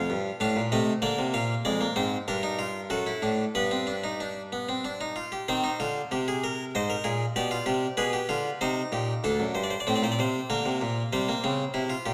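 Driving and serious, this excerpt of a baroque-style three-voice fugue in C minor moves at 96 BPM in 3/4 on a solo harpsichord, its bright, plucked French-style tone on a single set of strings sitting up front in a reverberant recital hall, with its opening material returning at 9.2 seconds.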